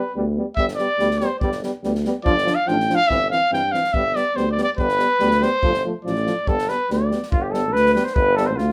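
A trumpet solo opens this festive, wild Balkan brass band excerpt at 142 BPM in 2/4, close-miked and up front with light vibrato and a soft attack. Beneath it sit a present trombone, a dark French horn in the background, a mellow tuba bass, and an acoustic drum kit with a punchy kick and medium-tuned snare played with bundle sticks, all moving through G, Dm/G and C/G in G mixolydian. At 7.3 s the trumpet stops and a distant, roomy flugelhorn takes the melody, with moderate studio reverb throughout.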